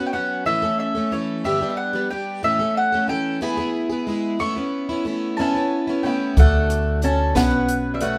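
Acoustic folk for a duo or small band, this short excerpt cut from a longer piece moves at a slow 61 BPM in a straight 6/8 and carries a warm, nostalgic mood. A picked mandolin with round, double-strung tone carries the melody from the start, over an up-front, plugged-in twelve-string acoustic guitar whose jumbo body gives a full, shimmering, octave-doubled accompaniment. At 5.4 seconds a lap resonator guitar, played with fingerpicks and slide, adds a mellow, metallic, nasal second line. At 6.4 seconds the harmony moves from its A, G and E/G# changes toward D and Bsus2, and an up-front pizzicato upright bass with woody, thumpy steel strings joins a dry cocktail drum kit with a high-tuned snare, punchy kick and hi-hat. The band plays live in one room, with a moderate studio reverb giving the sound a natural space.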